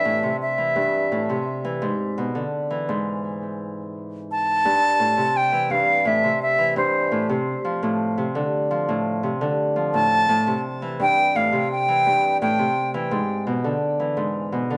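A moderate studio reverb gives this short excerpt of delicate, intimate folktronica in A minor a close, softly lit space, moving at 85 BPM in a straight 4/4 over Am7, E7 and Dm7 harmonies. An airy wooden flute with a crisp attack and straight tone carries an expressive melody up front, touched by digital delay, until it stops at 12.9 seconds. Beneath it, an acoustic Celtic harp plays fingerpicked, ringing arpeggios through its own digital delay and rings on alone until 14.8 seconds.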